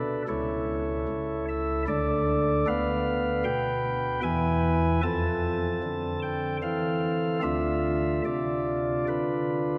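A classical, chorale-style excerpt for solo chamber organ, solemn and grave, moving at 75 BPM in 3/4 with a rubato feel. The organ's soft flute stops carry a gentle chiff and sit up front, voiced from C#2 up to A5 as the harmony passes from A/C# through Bdim/D, E and F to Dm. A deep cathedral reverb, lasting around 4.5 seconds, surrounds the playing until the fragment breaks off at 9.8 seconds.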